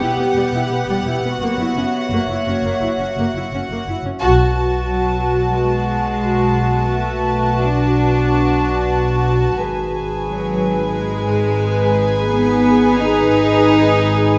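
Opening at once on a tense, ominous cinematic string chorale at 89 BPM, soft-attack sul tasto violin sections carry a floating melody and second line over an intimate viola section in the background, pure-toned cellos and an up-front double bass section anchor the low end, and a warbling, lo-fi tape-like pad adds detuned, chorused sustained chords, with an ensemble accent at 4.2 seconds as Emadd9 and F#7 give way to Bm7, all set in a moderate scoring-stage reverb.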